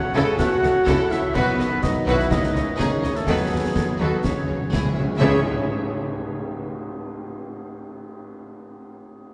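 A wet church reverb washes over this brief, swashbuckling cinematic film-score cue in C# minor at 125 BPM, where rich, distant violins carry the melody over dark sustained French horns and trombones, a warm second violin line, lush bowed violas, cellos and double basses, airy flute and clear oboe lines, a ringing fingerpicked harp, round soft-mallet timpani and bright-cymballed concert snare, bass drum and clash cymbals, until an up-front tam-tam enters at about 5.2 seconds as the horns and strings stop and rings out with the harp toward the close at 7.2 seconds.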